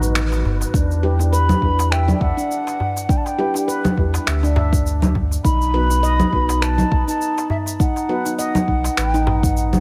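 This organic downtempo excerpt opens with a band accent on a B chord, framed by a very quiet, breathy pad and a dark, wind-like tuned noise texture that fade after the first moment. A hollow, mellow bansuri carries the melody with vibrato and a crisp attack, trailed by digital delay, while a handpan rings out meditative arpeggios through tape echo. Underneath, a round sine sub bass sits up front with sidechain pumping, and an electronic kick arriving at 0.7 s joins tape-toned cabasa, finger snaps and congas, plus a crisp, deep metal-shell darbuka recorded close and dry. From 1.0 s a felt-muted upright piano adds soft, intimate accompaniment in the background, also pumping and echoing. At 102 BPM in E minor with a light swing on the sixteenths, the music moves from Em7 back to B and holds an earthy, hypnotic mood in a light studio ambience.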